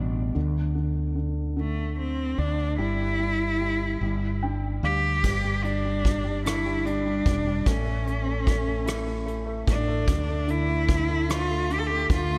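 A felt-muted upright piano opens this tender, heartfelt pop ballad in a straight six-eight, its soft, intimate tone carrying audible action noise and a subtle chorus, while a mellow fretless electric bass sits dark, round and up front beneath it. At 1.6 seconds a single bowed cello takes the melody, clear and focused with vibrato, and a tape echo trails its phrases. The piano plays a short fill at 4.0 seconds. A soft brush drum kit enters at 5.2 seconds, sounding distant and roomy in a studio space, with a punchy kick, hi-hat, rim click and a crash cymbal. Light reverb surrounds the performance, and the piece is cut from a longer work.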